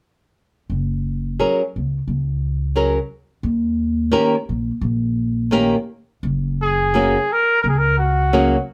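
A woody, thumpy upright bass opens this festive, romantic mariachi fragment at 0.7 s, its plucked steel strings sitting up front in the low register. A fingerpicked flamenco guitar joins at 1.4 s, warm and acoustic, carrying the accompaniment over a gently swung, rubato feel as the harmony moves from F#add9 to D#7 and back. At 6.6 s, early in the second section, a solo trumpet takes the melody in a classical style, its tone warm yet distant and roomy, lifted by a plate reverb. The bass, guitar and trumpet all sit close in the mix, and a modest small-room ambience ties the parts together. This brief passage is cut from a longer piece.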